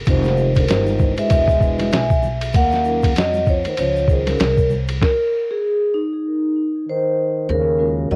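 Jazz-hop with a cool, nocturnal mood, this swung fragment of a longer piece pairs a ringing soft-mallet vibraphone melody, colored by cassette tape and analog delay, with a second mellow vibraphone comping in plate reverb, a breathy, growling trombone line with scooped notes, and a woody, growly pizzicato upright bass. A muffled, compressed sampler-style drum kit with a thumpy kick sits up front beside a bright tube shaker and congas in the background, while a vibraphone adds a fill at 1.6 seconds. The drums and percussion drop out at 5.0 seconds, leaving the vibraphones, trombone and bass to hang over lush ninth and eleventh chords in a lightly reverberant home-cassette sound.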